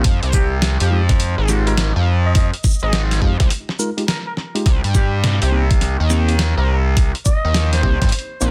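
A knocking, layered electronic kick sits up front from the opening, joined at once by a saturated sawtooth synth bass with a gritty, ring-modulated bite, plucky filtered attacks and held notes. Around them, a pitched-down, tape-toned sampler kit of compressed snare, hi-hat and shaker carries a swung sixteenth-note feel in this funky, swaggering glitch hop cut from a longer piece. A mellow, clean tine electric piano adds stabs over Fm9, moving to Cm7 at 4.7 seconds, pumping with sidechain and trailed by digital delay. From 0.3 seconds a distant, breathy trumpet growls a raspy, jazz-style solo line through its own delay, sounding dark and roomy beneath the heavier low end. The mix is dense and heavily limited in a digital ambience, with the kick dropping out at 8.1 seconds just before the close at 8.5 seconds.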